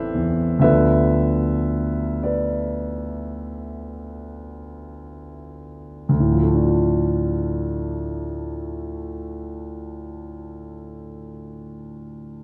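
A concert grand piano opens alone on an Am7 chord that moves to Dm6 at 0.6 seconds, its deep bass and long sustain hanging in the air. This is a short, mysterious, nocturnal fragment of impressionist classical solo piano, cut from a longer piece and unfolding in 9/8 with a rubato feel. Over the first 6.1 seconds the playing gradually slows, easing into a second passage that settles on a plain Dm chord. The instrument sits up front with an open, warm tone, spanning A1 to E5 and playing until 12.4 seconds. A moderate scoring-stage reverb and a dark production add shadowy depth around the slow, unhurried music.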